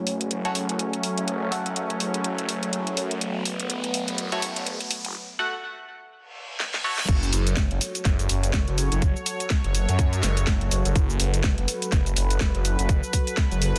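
Over a swung groove, this gritty, swaggering bass house passage builds under a filter sweep: a swirling, thick, phased and overdriven detuned saw bass pumps up front, an airy, evolving resonant pad holds sustained chords, and a nasal, band-passed chord stab with ring modulation and delay sits over a garage kit's cracking snare, hats and cabasa, while a riser from 2.7 seconds and a reverse cymbal lead to a drum fill and a drop at 7.1 seconds, where a tight electronic kick enters, all framed by light digital reverb and a dense, heavily limited master.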